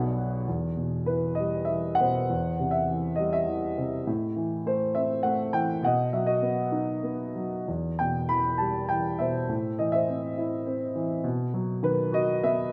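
A dark, mellow grand piano, boxy and placed up front, carries this brooding classical excerpt alone, opening with a brief fill before the main section begins at 0.5 seconds. In a three-beat metre with free, rubato phrasing, the lyrical line moves through a cool minor-key progression that settles twice on a tense B chord. A light reverb surrounds the instrument as the passage ends at 12.7 seconds, cut from a longer piece.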